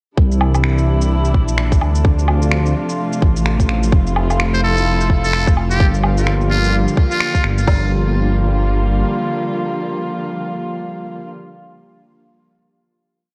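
A buzzy, raspy muted trumpet with scooped notes enters at 4.5 s with short phrases over a melancholic, ghostly future garage groove in G dorian at 128 BPM, swung on the sixteenths. An organic electronic kit with a tight kick and woody snare plays a muffled two-step beat, while gritty shaker, woodblock and finger snaps skitter beneath. A dark, detuned saw bass rumbles in long gliding notes and pumps along with sustained, intimate sul tasto chamber strings; once the beat stops at 7.8 s the strings carry the final chord, the bass lingering until 9.0 s, all under light reverb and cassette tape colour.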